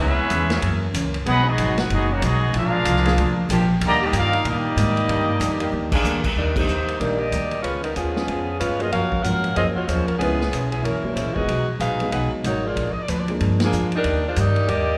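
Brassy and energetic, this big band swing excerpt opens with a tight trumpet section carrying the melody over a distant, roomy trombone section and sustained chords from a background saxophone section, while a picked dreadnought acoustic guitar, a woody pizzicato upright bass and a vintage drum kit with dark cymbals and a punchy kick keep the swing going, until at the close of a drum fill a mellow, up-front saxophone section takes over the melody at 5.9 seconds and a smooth concert grand piano joins in the background at 6.6 seconds, the band heard in a wet, hall-like reverb.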